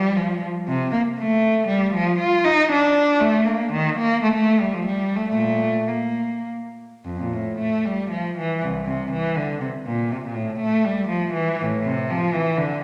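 A solo cello opens at once, bowed by a single player and placed up front, with a rich, expressive tone shaded by vibrato and portamento. This is a classical, baroque-style suite movement for unaccompanied cello in Bb major and 3/4 time, its flowing, radiant mood carried by a rubato feel that lets the tempo drift between 98 and 125 BPM. The line ranges from C2 up to F4, giving the instrument room to sing across its compass. A first passage runs to about 7.1 seconds, and the same material returns from there to the close at 12.8 seconds. The recital hall's reverb adds a lingering bloom around the cello in this brief cut from a longer piece.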